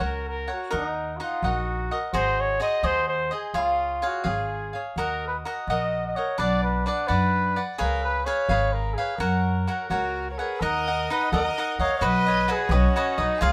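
A mellow, distant trumpet carries the melody with light vibrato in a classical style, set in a festive yet romantic mariachi piece in F# major, taken from a longer work and moving at a rubato 85 BPM in 6/8. Beneath it, a bright, crisp picked cavaquinho and a woody, growly pizzicato upright bass sit up front in the moderate studio reverb. At 9.9 seconds a rich, bowed violin joins with a focused second line and smooth top, just before the harmony shifts at 10.6 seconds.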